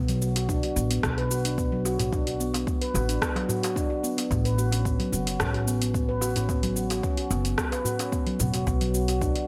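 Organic downtempo in B minor at 110 BPM, this hypnotic, meditative excerpt sets up-front, ringing handpan arpeggios with digital delay over a woody, thumpy pizzicato upright bass pumping under sidechain, while an overdriven deep house kit of cabasa, hi-hat and rim click with gated reverb and a deep, overdriven electronic kick, both re-recorded in a small room, sit alongside a crisp, soft-handed darbuka in the background, the harmony moving from Bm to A69 and back within a bright 1980s-style digital production with moderate plate reverb.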